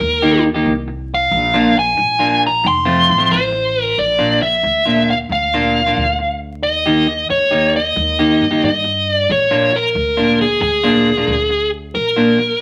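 A dark, overdriven lead guitar opens this laid-back, soulful electric blues shuffle at 90 BPM in Bb mixolydian, soloing up front for the first 4.0 seconds over a twangy, clean, picked electric guitar riff and a woody, growly pizzicato upright bass. The swung 4/4 groove moves through Eb, Bb and F, then returns to Bb, Eb and Bb, with the lead carrying the melody to the end of this short cut from a longer piece. A wet studio reverb and a layer of vinyl crackle colour the recording.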